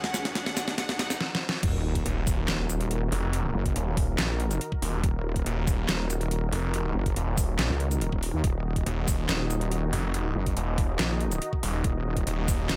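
Aggressive and chaotic, this heavy wobble dubstep cut from a longer piece rides a half-time feel in 4/4. It opens on a short build-up in which a rich, bowed studio violin section sings a brief vibrato melody through dub echo, set back in the background alongside huge, bright supersaw chords that pump under sidechain and a low-pass filter. A riser and sub drop sit in the background as the overdriven dubstep drum kit plays a fill, its deep snare, metallic hats, handclaps, shaker and crash sounding up front and roomy. At 1.6 seconds the drop hits with an impact, bringing in a knocking, layered electronic kick and a heavy, saturated wobble bass coloured by chorus. From 2.1 seconds a growling, snarling distorted saw bass with a moving notch joins it up front, making the low end dense and abrasive within a digital ambience.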